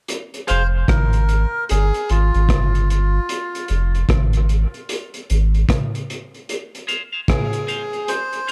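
A crunchy, gritty breakbeat kit of hi-hat, tight kick and rim click opens at 0.1 s in this meditative, heavy dub reggae excerpt at 75 BPM in F minor with a swung sixteenth feel, soon joined by a reedy, breathy melodica drenched in dub echo, a deep, round sub bass sitting up front until 5.6 s, and a bright, twangy clean electric guitar, high-pass filtered and echoed, that flickers briefly before returning at 6.9 s, all over a single F minor chord in an echo-heavy small-room mix.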